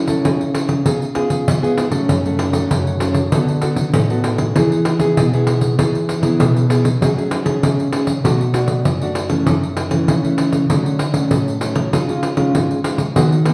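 Samba and choro meet in this joyful, lively passage, a short section lifted from a longer piece and played in a straight 4/4 feel. A fingerpicked nylon-string guitar carries the accompaniment from the first moment, its fresh strings giving a warm, classical voice that ranges from F#2 up to A4. Just after it, at 0.1 seconds, the pandeiro joins, jingly and played with soft hands, sitting close and up front beside the guitar. The harmony moves through minor colours such as F#m7, F#madd9 and Bm7, touching D6, Dmaj7 and E along the way before closing on C#. A large studio reverb surrounds the pair, and the listener seems to hear the room from further back, lending the intimate duo a spacious glow, with the instruments tuned to A4 = 441 Hz.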